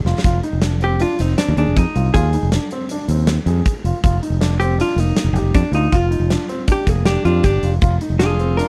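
Dry and up-front, this brief, driving, brooding progressive instrumental in 5/4 opens with a drum fill on a huge arena kit with a punchy kick, as an overdriven, punchy fingered electric bass and a dark, mellow grand piano playing arpeggios move from Fm7 to Gm7/F, a clean, compressed vintage hollow-body jazz guitar carries the melody from 0.8 seconds, and a raspy, gritty alto saxophone with vibrato adds a second line at 7.1 seconds.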